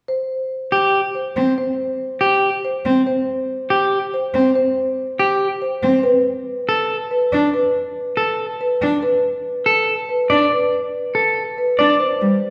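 A clean, bright electric guitar sits up front with picked arpeggios between G4 and D5, entering at 0.7 seconds and carrying this propulsive, minimalist classical pattern music. The pulse runs at 282 BPM in eighths, in a straight 7/8 metre. A marimba played with medium mallets opens the passage at 0.1 seconds, holding its mid-forward melody in the narrow span from B4 to C5. A bowed solo cello joins at 1.4 seconds with a warm, expressive accompaniment between G3 and D4, shaped by vibrato and portamento. The harmony moves from C5 to Bm7/D at 6.0 seconds and returns to C5 at 12.0, all resonating in a wet recital-hall reverb that gives this short cut from a longer piece a spacious, church-like glow.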